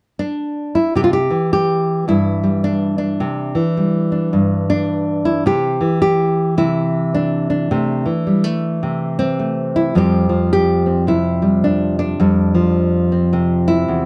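A lone nylon-string guitar enters at 0.2 s, fingerpicked up front with a classical touch and audible finger squeaks, opening this pastoral, hopeful folk excerpt at 107 BPM in 4/4 with a gentle swing on the eighth notes. In C major, the harmony moves from Cadd9 to Am/C at 5.5 s and settles on Fsus2 at 9.9 s, spanning from E2 up to G4. A moderate studio reverb frames the guitar's dusky tone in a dark, warm production, tuned slightly high to A4 = 441 Hz.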